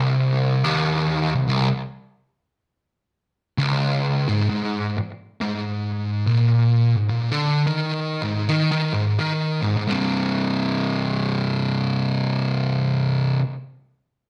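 A dark, double-tracked fuzz guitar sits up front and alone in this brooding, heavy metal cut in C minor at 86 BPM with a swung 4/4 feel, its compressed, picked low-register riffs drenched in distortion and slapback echo, moving from Cm to Ab5 before landing on C5 at 9.9 s, all within a large studio reverb.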